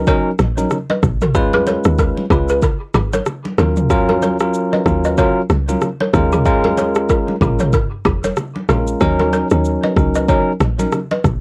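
A bell-like tine electric piano sits up front, laying down clean, bright chords that drift from Ebm7 through Db7, Gbmaj7/Eb and Bbm7 before settling back on Ebm7 at 9.0 seconds. This short afrobeats excerpt from a longer piece has a hypnotic, sultry mood and a swung sixteenth-note feel. Beneath it a woody log drum bass gives punchy, fast-attack notes that decay into a mellow tone. A balafon riff, dry and buzzing under soft rubber mallets, carries a tape echo, while a deep house drum kit with a deep kick, rim click, shaker and toms brings a gritty, vintage sampler texture. Thin-skinned, damped congas played with hard hands sit in the background, and the whole piece has the light reverb of a home cassette recording.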